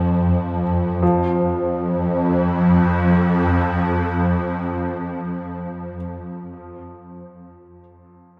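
Cavernous and dark, this fragment of dark ambient drone in free time, tuned to A4 = 443 Hz, opens on an Fsus4 with an up-front swarming drone, tense, detuned and granular with sine tones, slow attack and long release, sounding in unison until 5.9 s, while a very quiet, bright and natural grand piano plays low arpeggios through to 8.4 s, all within the echo of a cathedral.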